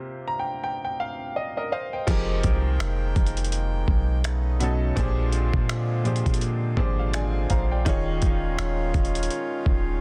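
Contemporary R&B with a late-night, longing mood, this excerpt moves at 83 BPM in F minor with a swung sixteenth feel. A clear, worn grand piano plays fills alone over a C7sus4 until 2.1 seconds, when a reedy, boxy accordion with sidechain pumping, a deep, round 808-style bass, and a gritty, overdriven sampler-style kit with a thumpy kick, finger snaps, hi-hat and crash all enter over an Fm11 chord. The piano adds another fill at 6.4 seconds, and the dry, dense, heavily limited mix keeps the drums, bass and piano up front.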